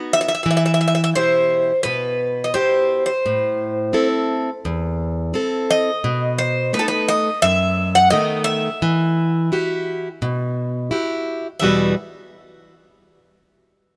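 A picked, plugged-in steel-string acoustic guitar opens at 0.0 seconds, and the Greek bouzouki joins at 0.1 seconds in this brooding, cool passage of Greek folk music, cut from a longer piece. At 86 BPM in a straight 4/4 and set in E harmonic minor, the guitar supplies the accompaniment across a low-to-middle range, its concert tone carrying a finger squeak. Above it the bouzouki carries the melody in a higher register, its double strings giving a metallic, partly octave-doubled ring that sits up front and a little louder than the guitar. The harmony moves from Em to Am, then B7, before settling on Emadd9. A moderate plate reverb lends the sound a spacious halo, and both instruments stop at 11.9 seconds.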